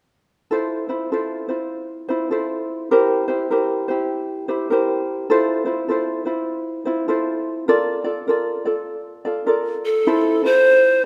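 A breathy bamboo pan flute, with chiff, tongued notes and vibrato, steps up front at 9.9 s over a light, thumb-plucked acoustic ukulele that has carried the gentle swung accompaniment since 0.5 s through Fmaj7, C7 and Bbmaj7/F chords, giving this sunny, relaxed Hawaiian excerpt from a longer piece a soft bloom of scoring-stage reverb.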